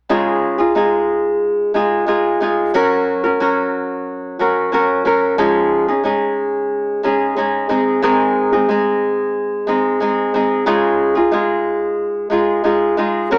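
Easy-going and sunny, this short pop passage is cut from a longer piece and rests entirely on a single flamenco guitar playing accompaniment from 0.1 to 13.4 seconds. The acoustic guitar sits up front in the mix, fingerpicked with a warm tone and an audible finger squeak that adds a close, human touch. Its part moves through Dbadd9, Gb, Dbadd9/F and Ab before settling back on Dbadd9 at 10.7 seconds, in a straight 4/4 feel. A wet studio reverb gives the guitar a sense of space. The overall sound has a small-speaker character with a faint mains hum underneath, and the instrument is tuned to A4 = 436 Hz.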